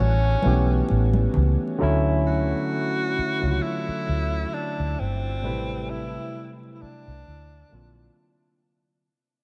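A slow 4/4 pulse with a slight swing on the sixteenths carries this sensual neo-soul and R&B fragment, cut from a longer piece. A round, punchy, foam-muted electric bass sits up front from the start. Over it, a breathy tenor saxophone carries the melody in a whispered, intimate voice, with vibrato, soft attacks and scooped notes. A barky, lightly overdriven tine electric piano, with a subtle chorus and the grit of a combo amp, supplies the chords, moving through A9, Dmaj9, Am7 and D7alt. Very quiet, damped congas played with soft hands appear only between 0.4 and 1.6 seconds. The mix is dreamy and soaked in a huge ambient reverb dusted with vinyl crackle, and it begins fading out at 1.8 seconds.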